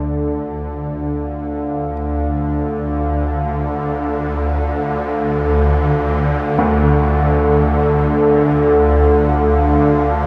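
In free time, this dark, unsettling ambient drone rests on a single D minor chord tuned to A4 = 439 Hz, with all three parts fading in together over the full 10.3 seconds of this fragment from a longer piece. Up front, a swarming, detuned granular drone churns tensely in the low register, while a deep, moody pad with a sub octave holds sustained chords above it, thickened by chorus and shimmer reverb. Farther back, an intimate baby grand piano plays low arpeggios with audible action noise and short sustain, trailed by diffuse delay, and a wet cathedral reverb with a 5.3-second tail surrounds the whole sound.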